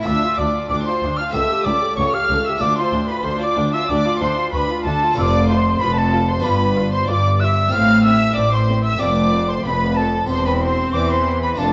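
A mellow wooden flute with an airy, straight tone leads a driving, dramatic baroque-style concerto passage at 94 BPM in 4/4, joined on the melody by a distant violin section while a second violin section carries a smooth-topped second line, a dark viola section and a dry, brilliant harpsichord sit in the background, and nasal cellos with double basses anchor the bass from 0.1 s, the gut-string sections sounding reedy with light vibrato as chords move from D minor into C major at 5.2 s, all set in a moderate recital hall and heard through worn, warbling old cassette tape.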